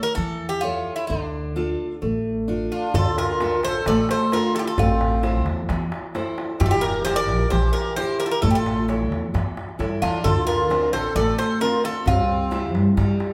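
A metallic, double-strung Greek bouzouki carries the melody up front over a full-bodied, jumbo-sized picked steel-string acoustic guitar and a thumpy, woody pizzicato upright bass in this intense, driving Greek folk band piece at 132 BPM in D minor, with a sweet, reedy accordion second line arriving at 2.7 seconds and a deep, distant clay-shell darbuka joining at 2.9 seconds, the band playing live in one room under a wet large-studio reverb as the chords move through Dm, Am, Edim, A and Dm7.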